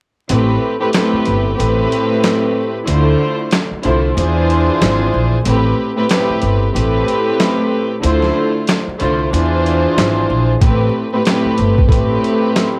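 Boom-bap hip-hop in A minor at 93 BPM with a swung 16th-note feel, dark and moody, cut from a longer piece, where a close, reedy chamber string section plays bowed gut-string lines with light vibrato over an Am9, Dm9 and E7b9b13 cycle while a woody pizzicato upright bass holds the low end. The gritty, compressed sampler-style drums are pitched down and sit up front with hi-hat, snare and handclaps, and the thumpy kick holds off until 10.6 seconds. Cassette-tape grit on the strings and drums, vinyl crackle and light reverb give it a home-recorded feel.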